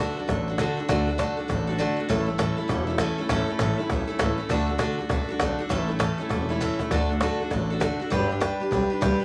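A bright, freshly strung steel-string acoustic guitar, picked and up front, opens this rowdy, retro rockabilly excerpt with a woody, gut-strung upright bass thumping underneath in pizzicato. A snappy cajon with its snares joins at 0.2 seconds, close and dry, giving the swung groove a crisp, acoustic drive. The kick and snare briefly drop out at 1.8 seconds, and a short drum fill at 6.6 seconds leads into a new section that moves from D to G. The guitar carries the accompaniment over a simple pattern of D and A chords, while the dark bass anchors the low end. A moderate large-studio reverb gives the trio a lively sense of space, and the passage is cut from a longer piece.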